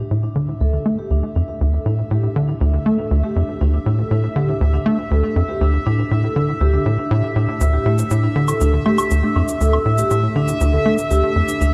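A straight 4/4 pulse at 120 BPM drives this expansive, hypnotic stretch of ambient sequencer-driven space music, cut from a longer piece, where a tight, punchy sawtooth-and-square sequencer bass riff sits up front with lush chorus and analog delay under soft-mallet vibraphone arpeggios that fade in with a metallic, airy ring and fast motor vibrato, while a bubbling, resonant stepped-filter texture also fades in on a high E5 with chorus and its own reverb, an overdriven electronic shaker and woodblock with analog delay join at 7.6 s, and the whole cassette-tape recording sits over a D5 chord in a huge ambient reverb with a 7.8 s tail.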